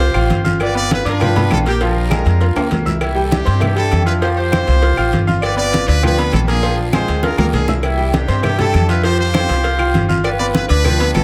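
Festive, danceable salsa moves at a brisk straight four, with a punchy, tight horn section carrying the melody up front over a dark, woody pizzicato upright bass and a bright concert grand piano whose worn, intimate tone brings audible action noise. Thin-skinned congas played with soft hands, ringing agogo bells and timbales, dry claves, a tight high-tuned cowbell and a raspy, saturated guiro sit in the background, with drum fills at 2.6 and 7.2 seconds. The chords cycle through Fsus2, G7, Bb7 and Cadd9 in a light reverb, and this short cut from a longer piece repeats its opening section at 7.8 seconds.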